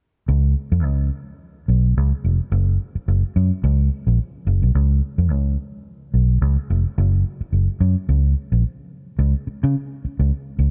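A vintage muted fingered electric bass plays alone in this strutting, gritty funk excerpt, its dark, foam-muted, round and punchy amped tone sitting up front with a light reverb and a lightly swung sixteenth-note feel, pausing for a break at 8.6 seconds before moving into a new section that runs until 10.7 seconds.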